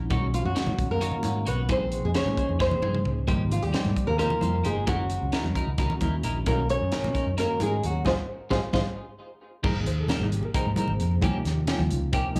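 Electric jazz fusion in a lopsided 7/8 with a straight feel, this soaring, bright excerpt is cut from a longer piece and heard live through a club PA with light reverb. A dark, up-front flamenco guitar carries the melody from 0.3 s to 8.8 s, fingerpicked on fresh strings with audible finger squeak and touched by plate reverb and tape echo, while a mellow bass clarinet traces a smooth, subtoned second line with vibrato further back. Underneath, a growly, punchy fingered electric bass anchors a tight funk kit with a high-tuned snare and tight kick, joined by damped, thick-skinned congas in the background. A reedy electric piano with fast tremolo fills in the harmony, and a clean, compressed electric guitar adds picked stabs dressed in lush chorus, plate reverb, slapback and tape echo. The chords move through rich ninth, eleventh and thirteenth voicings, with a band accent from 8.1 s to 9.6 s and drum and electric piano fills at 9.0 s leading into a new section at 9.6 s.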